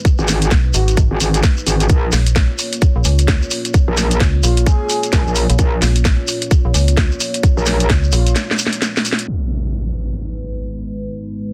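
Bass house with a bouncy, swaggering strut, cut from a longer piece and riding a swung groove in four. The drop opens at once on a tight, up-front electronic kick layered with a garage kit whose cracking snare, warm hats and crash cymbal are softened by low-pass filtering, while a grainy, mellow shekere sits close and dry in the background. Two up-front basses carry the weight: a saturated, aggressive wobble bass with chorus and overdrive, and a dark, decaying FM bass, both pumping against the kick. Above them a deep, moody sawtooth pad holds sustained chords through chorus and phaser, moving from G# minor to A# minor, and a soft, breathy flute-like lead with vibrato and delay surfaces only in brief phrases. A drum fill marks a short break near 8.4 seconds, and an electronic impact lands at 9.3 seconds as the pad carries on into the next section over a dense, heavily limited and nearly dry mix.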